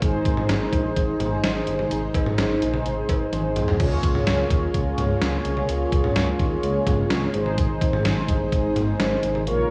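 Heard through a worn, warbling cassette-tape sound with a lush hall reverb, this cool, driving synth-pop fragment moves at 127 BPM in a straight 4/4 over chords of Ab, Db6 and back to Ab. An up-front, gated 80s digital drum machine pounds out a thumpy kick, gated-reverb snare, hi-hat, cowbell, crash and toms, with a drum fill at 3.3 seconds, while a smooth sawtooth synth bass holds the low end. Above it, a brassy, round, detuned synth brass with chorus and a filter sweep carries the accompaniment, and a vintage organ-like ensemble string pad sustains chords in the background.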